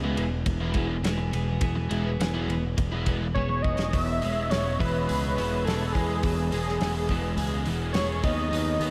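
A straight 4/4 indie rock groove, wistful and jangly, sets a crunchy overdriven guitar riff washed in analog chorus and diffuse delay beside a twangy, compressed twelve-string electric guitar and a bright, direct picked bass, with a loose drum kit bringing dark cymbals, a fat snare and a punchy kick from 0.2 seconds, and then a thick, warbling, detuned unison lead with vibrato and its own ambient delay joins up front at 3.3 seconds over a drum fill, the dreamy mix soaked in huge reverb in this fragment of a longer piece.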